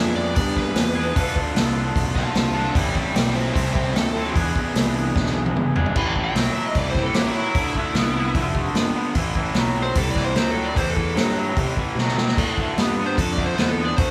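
Smoky and heavy, this excerpt of blues rock with a southern rock edge drives at 150 BPM in A minor, a power trio playing live in one large, moderately reverberant room. A dark, overdriven lead guitar takes a solo for the first 6.0 seconds over a bright, double-tracked garage guitar riff and a growly, fuzzed fingered bass, while an up-front vintage kit with dark cymbals and a punchy kick enters at 0.1 seconds and throws in fills at 5.2 and 12.0 seconds. The chords move from E7#9 through Dm7 and Am, settling into a second section built on Am, Dm7 and Am7.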